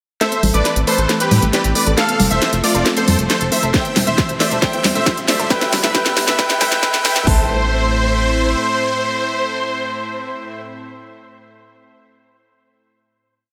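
The recording sits in a moderate concert hall reverb with a high-pass filter, framing a short uplifting trance piece with a soaring, euphoric mood. Up front, a huge, detuned supersaw lead plays a repeating riff in thirds and sixths, pumping with sidechain and trailed by tape echo. A clear concert grand piano with deep bass repeats its own riff, while a very quiet, warbling vintage pluck doubles the lead in unison. Underneath, a lush supersaw pad holds sustained chords with a slow attack, a round analog pluck runs an eight-step sequence in the background with chorus and a filter sweep, and a tight, saturated sequencer bass gallops in sixteenth notes. The build is driven by programmed hats, a cracking snare backbeat and high congas, joined from 3.7 s by a second kit with a punchy four-on-the-floor kick, open hats and floor toms, while a very quiet riser adds transition effects. The drums drop out around 7.2 s, and the bass lingers until 8.6 s as the lead, piano, pad and doubling pluck ring out on a final chord until 10.6 s.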